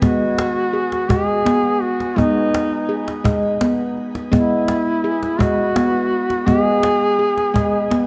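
A mellow duduk sings a smooth-topped, folk-style solo melody with vibrato and scooped notes, trailed by shimmer reverb and a diffuse ambient delay, over ringing, fingertip-played nitrided-steel handpan arpeggios with a vintage, band-limited shimmer, while a woody cajon with faint snares and hard hands adds percussion throughout this hypnotic, gentle world meditative excerpt in G# minor at 56 BPM in 6/8, all set in a wet echo-chamber studio ambience for the full 8.1 seconds.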